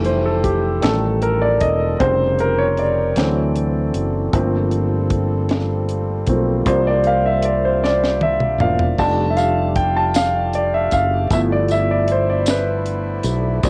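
Hopeful and jubilant, this slow gospel excerpt in 6/8 at 52 BPM in F major features a warm, up-front grand piano soloing across the whole 13.7 seconds over clear French horn chords with light vibrato in the background, a bright, growly fingered electric bass, and a tight funk drum kit with a high-tuned snare and cassette-tape character that plays a fill at 7.8 seconds before a jingly tambourine enters at 9.0 seconds, all in a dry home cassette recording that moves from Fmaj9 through Gm11 and C9sus4 to G13.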